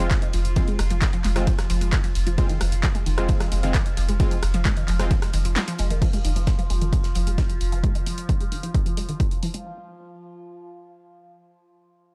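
The recording sounds dark and dry, with a tape-warmed, close mix. It is a driving, industrial peak-time techno cut taken from a longer piece, opening on an F minor drop whose synths and bass pump against the beat. A punchy electronic kick and a saturated, thick sub bass sit up front. Around them an analog drum machine adds claps, hats, rim clicks, ride, crash and a punchy snare, while a very quiet acoustic studio kit contributes airy ride and snare touches. A squelchy, resonant blip pluck repeats its riff through phaser, chorus and tape echo, supersaw stabs punch in with a noisy, evolving edge, and a drone with moving overtones swells in slowly beneath them, bathed in its own chorus, phaser and reverb. The kick falls away for a drum fill at 5.6 seconds, and from 6.0 seconds the harmony drops out while a filter sweep moves across the synth arpeggio, with the bass ending at 7.8 seconds.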